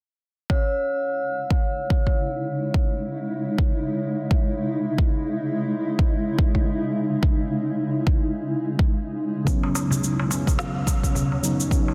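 Organic downtempo with a mystical, warm mood, cut from a longer piece, built on a deep, up-front electronic kick from 0.5 seconds alongside a ringing, meditative bronze singing bowl with slow beating struck by a wooden striker. A cloudy, evolving granular pad enters at 1.7 seconds with blurred, detuned sustained chords, built-in reverb and sidechain pumping, all set in a huge ambient space. Near the end, at 9.4 seconds, dark felt-like synth keys with chorus and tape echo join, followed moments later by an electronic shaker and woody snare and then a small clay-shelled darbuka played with soft hands, as the harmony moves from C#m to Bsus2/C#.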